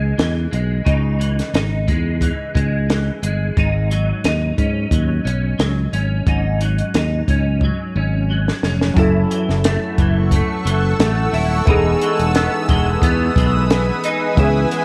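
Indie pop with a bedroom-pop haze, this wistful, mellow piece moves at 89 BPM in 4/4 with a light swing on the sixteenths, sitting in C# minor and cut from a longer piece. A clean, picked electric guitar with a bright, twangy tone carries the accompaniment from the start, thickened by ensemble chorus and a warbly pitch drift, while a fingered electric bass sits up front with a direct, amped sound. A compact cocktail drum kit plays hi-hat, kick and snare in a small room, its dark, smooth character set off by a high-tuned snare and a punchy kick, and a drum fill at 7.6 seconds leads into the second section. At 8.9 seconds warbling lo-fi synth keys arrive, detuned and nostalgic, with a fast attack, a decaying tail, chorus and an airy noise layer. A granular cloud pad follows at 9.9 seconds, holding blurred, evolving chords high above with a slow attack, long release and its own reverb. The harmony shifts from C#madd9 and G#7sus4 to F#m7 and Emaj7, all wrapped in a small room ambience.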